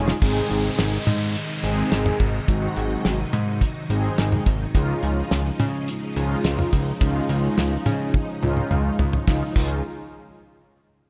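A damped 70s acoustic drum kit sits up front in this bright, upbeat synth-pop excerpt at 106 BPM in a straight 4/4, its tight kick, fat snare, hi-hat, toms and crash cymbal sounding dry, with a fill at the very start and another from 8.1 to 9.3 seconds. Beneath it, a thick, saturated analog bass built from detuned sawtooth and square waves also sits up front, with a filter pluck, a fast attack and sustained notes. Mellow synth brass supplies round, brassy accompaniment coloured by chorus, vibrato, a sub octave and a filter sweep, its dark tone set against the shimmering, vintage string machine violins, which hold soft-attack chords in the background through ensemble chorus and a moving notch. An electronic downlifter adds texture during the opening seconds. The harmony moves from Ab to Dbadd9 in Db major, and a moderate scoring-stage reverb with a 1.9-second decay gives the whole mix a sense of space.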